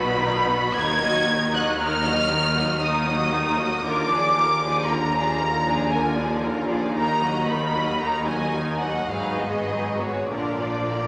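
Classical string orchestra music, this is a slow, elegiac romantic movement in triple time, phrased with a rubato that lets the melancholic line breathe. Across the whole 11.1 seconds, the first violins carry the melody up front with a smooth, even tone and steady vibrato, while a second violin line sits close beneath them with a focused sound. The violas fill in the accompaniment from a more distant position, their bowed tone lush, and the cellos anchor the bass with a clear vibrato. Double basses reinforce the low end with a rich, smooth depth. A wet concert hall reverb surrounds the ensemble, and the harmony moves through a dark minor progression, pausing on a dominant chord as this fragment of a longer piece breaks off.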